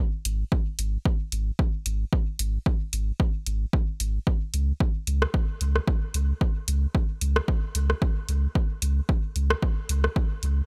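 A swung, hypnotic dub techno groove in 4/4 pairs an overdriven, punchy electronic kick with a dry analog drum machine's hi-hat and rim click treated with dub echo, while a deep, round sub bass pumps beneath them from 0.3 seconds in this cavernous, digitally ambient excerpt cut from a longer piece.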